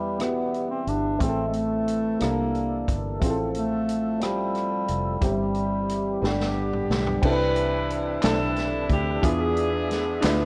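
A roomy bass clarinet carries the melody up front in this slow, reverent yet jubilant gospel piece in 6/8 at 60 BPM, cut from a longer performance in C major, with a dark, woody upright piano, a fat tonewheel organ with slow rotary speaker, light overdrive and chorus vibrato, a round fingered electric bass, and a distant, mellow French horn section holding chords in the background. A swinging big-band drum kit with a punchy kick plays throughout, and at 6.2 seconds a drum fill arrives just as a smooth, up-front horn section takes over the melody, with very quiet, hollow group handclaps joining at 8.2 seconds. Light reverb and a worn cassette-tape warble with drifting pitch give the sound an aged character, as the chords move through colors like C13, Cmaj9 and E7b9.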